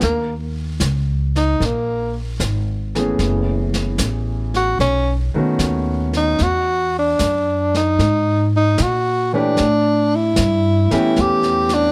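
Swung eighths at 75 BPM in 4/4 carry this melancholic, smoky jazz ballad excerpt, where a breathy tenor saxophone solos up front throughout its 11.9 seconds with mellow subtone, vibrato and scooped notes over an intimate grand piano whose long sustain and audible action noise sit close, a woody, thumpy pizzicato upright bass, and a softly brushed small-room drum kit with a rolled-off top, all captured by close, detailed microphones in light reverb as the chords move from D#5 through F#m11, B9 and Emaj9 to A9.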